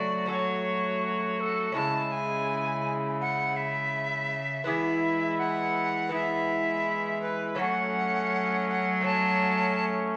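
A classical renaissance-style consort dance, solemn and courtly, in a short 10.2-second cut that moves through F#m, C#m and E before settling back on F#m. An airy, woody alto recorder with vibrato and a soft attack carries the melody up front, while a mellow cor anglais with light vibrato plays a second line and a bowed cello with a reedy gut-string tone supplies the bass. A delicate fingerpicked lute with doubled gut strings and a warm trombone fill out the accompaniment, and the ensemble sits in a wet stone room.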